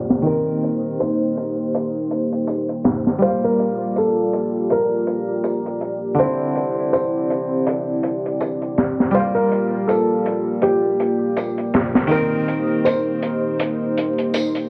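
Hypnotic and brooding, this trip hop excerpt at 81 BPM pairs a soft, felt-muted upright piano melody with tape echo and audible action noise against bright, plucked harpsichord accompaniment with tremolo, a deep, detuned sawtooth pad with chorus holding sustained chords through Cm7, Gm7 and Cadd9, a crunchy, saturated breakbeat kit of hi-hat and high-tuned snare with a rolled-off top entering at 0.1 seconds, and a faint, close tambourine from 1.0 seconds, all under vinyl crackle, small room ambience and a filter sweep across the whole passage.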